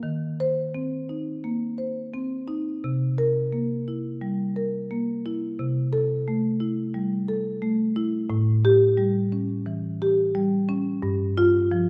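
A solo marimba played with soft mallets sits up front, its rosewood bars giving a woody, round and mellow tone across a range from G2 to C5. This reflective, hypnotic contemporary classical excerpt moves at 87 BPM in a straight 4/4, with the harmony passing through Eb5, C7, C6 and A7. Light reverb surrounds the instrument for the full 11.9 seconds.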